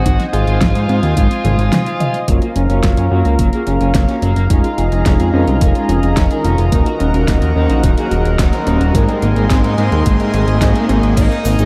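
A straight 4/4 pulse at 108 BPM drives this nocturnal synthwave excerpt. A knocking, overdriven electronic kick anchors the groove and a thick, detuned analog bass sits up front, while a layered pop drum kit adds fat snare, hi-hat, cabasa, toms and crash. A shimmering chorused pulse-width pad and a round, tine-like synth pluck playing arpeggios sit behind a dark octave-fuzz lead guitar's brief melody, which gives way at 2.3 seconds to a bright overdriven electric guitar riff, bold analog synth brass stabs and filter-swept arpeggios over chords moving from Gbmaj7 to Abadd9, with a very quiet riser entering at 6.4 seconds and the mix soaked in dreamy plate reverb.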